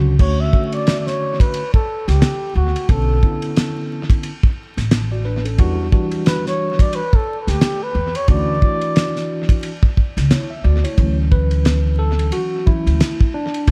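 Vinyl crackle and a studio reverb give this echo-heavy mix a hazy, late-night sheen. It is a cool, smooth jazz-hop excerpt at 89 BPM in 4/4 and D major, with a 16th-note swing. A cloth-damped, thuddy drum kit sits up front, with a fat snare, a tight kick, and dark, rolled-off cymbals from the hi-hat, ride and crash. Beside it, a woody pizzicato upright bass holds down the low end. A clean tine electric piano, heard through its built-in speakers, carries the Dmaj7, Bm9, Em9 and Dmaj9 harmony. From 0.2 to 9.6 seconds a trumpet with a bucket mute takes the melody, veiled and breathy with soft attacks, scooped notes and tape echo. It sounds whispered and intimate. At 11.0 seconds the electric piano steps forward for a short solo as the piece returns to Dmaj7.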